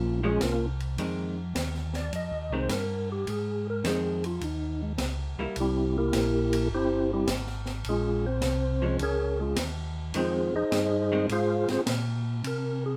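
A percussive tonewheel organ carries the melody from the start, its soft, flute-like tone touched with third harmonic percussion and turning through a slow rotary speaker with chorus vibrato, sitting up front in this late-night, smoky soul jazz organ trio fragment cut from a longer piece. Beneath it, a second tonewheel organ supplies the bass line with a round, dark, clean sound, also shaped by chorus vibrato and slow rotary speaker. A vintage hollow-body electric jazz guitar adds picked, compressed accompaniment from 0.2 to 11.3 seconds, while an open acoustic drum kit with dark cymbals and a high-tuned snare works the hi-hat, ride and snare in a natural studio room. The groove swings at 105 BPM in 4/4, moving through F minor changes from Bbm7 to Fm7, C7 and back again. Light reverb surrounds the whole trio.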